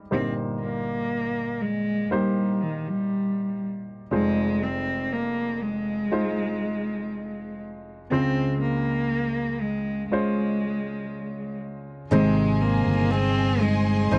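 A dry, close 1970s-style studio sound with light reverb frames this heartfelt, hopeful pop ballad excerpt in Ab major at 60 BPM, where a clear, polished baby grand piano accompanies a smooth, bowed solo cello melody with vibrato, and at 12.1 seconds a lush symphonic violin section adds a soft-attack second line, a woody studio string section holds sustained chords, a full-bodied picked steel-string acoustic guitar plays arpeggios in the background, and an amped, up-front fingered electric bass takes the low end.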